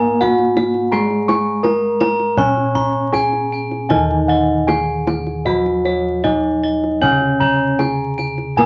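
A straight 4/4 pulse moves at 77-86 BPM in this shimmering, ceremonial piece of Javanese gamelan, set in Eb slendro with tuning at A4 = 443 Hz and cut from a longer performance. A bronze metallophone struck with a wooden mallet carries the melody up front with a ringing, mid-forward tone. Beneath it, a second metallophone in paired tuning plays the accompaniment, close-miked and full, its shimmering beats clearly audible. High arpeggios come from both mellow, padded bossed gongs and a bright metallophone played with a horn mallet, while lower bossed gongs supply a soft, boxy bass. The kendang joins at 0.2 s with tight, soft-handed strokes, and the music shifts into a new section at 3.9 s, all wrapped in a short small-room reverb and a layer of vinyl crackle.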